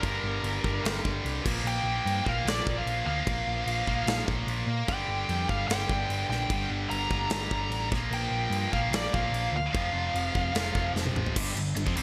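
This heavy, menacing hard rock excerpt opens with everything at once: a nasal, dark overdriven lead guitar with a parked wah picks out the melody over a double-tracked, high-gain rhythm guitar riff sitting up front, a round hollow-body electric bass and a big acoustic drum kit with a punchy kick and gated reverb. The lead drops out at 10.9 seconds, and a drum fill from 11.0 to 11.4 seconds rounds off the passage. A lush hall reverb and bright 1980s-style digital production give the whole mix a polished sheen.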